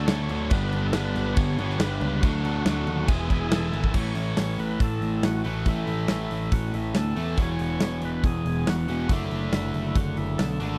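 A dry, close studio sound in the 1970s style frames this short cut from a longer classic rock piece in A major, swaggering and driving at 140 BPM in a straight 4/4. The huge arena drum kit sits up front with bright cymbals, a medium-tuned snare, a boomy kick and hi-hat, carrying a hall-like acoustic presence from 0.1 seconds. A cranked stack guitar, bright, overdriven and double-tracked, also sits up front playing the picked riff, while an overdriven picked electric bass adds a dark, round, direct low end beneath it. An overdriven tonewheel organ carries the melody in a thick, gritty voice through a slow rotary speaker with slapback echo, sitting lower in the mix than the others. The harmony moves through D, G and E in the opening passage, then shifts at 3.9 seconds to a second passage built on A, E and D/F#.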